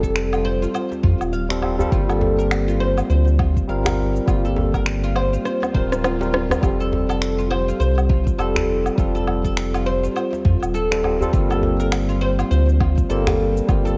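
Earthy and peaceful, this organic downtempo excerpt sets woody, double-strung oud arpeggios with digital delay and 12-bit grit over a barky, lightly overdriven tine electric piano with chorus and sidechain pumping, a round, dark analog bass, a deep layered electronic kick with shakers, finger snaps, woodblock and rim clicks, a tight djembe entering at 0.9 seconds, a very quiet ringing bronze singing bowl, and a faint electronic swell around a drum fill at 5.5 seconds, all wrapped in worn, warbling cassette-tape drift and light studio reverb.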